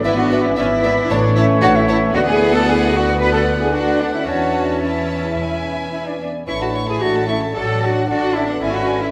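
A rich, expressive violin section carries the melody with vibrato through this graceful, lively classical-period orchestral excerpt, played with rubato in a moderate concert hall. Behind it, a soft-edged second violin section, a pure silver flute, an oboe and a very quiet, distant clarinet share the second line. A mellow bassoon and focused violas accompany, a horn section holds sustained chords, and cellos with a lush double bass section anchor the bass, while very quiet timpani struck with hard mallets sound only at 1.1 and 5.4 seconds.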